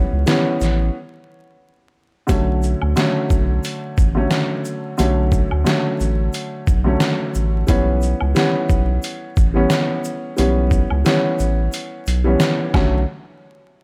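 Moody and gritty, this short boom-bap hip-hop cut sits in a swung 4/4 groove that shifts from an A7 chord into a Bm7 vamp. A dark upright piano carries the accompaniment, its woody, mellow tone softened by cassette-tape colour and filtering, with audible action noise and short, intimate notes up front. Beneath it, a saturated sub bass holds thick, sustained sine tones with a fast attack. The sampler-style drum kit enters at 0.3 seconds, pitched down and compressed, with a thumpy kick, a medium-tuned snare, hi-hat and shaker re-recorded in a large room. A close, dry egg shaker with group handclaps sits in the background, while vinyl crackle adds a dusty surface. A break runs from 0.9 to 2.3 seconds, and the kick falls silent from 11.7 seconds to the end of this fragment of a longer piece.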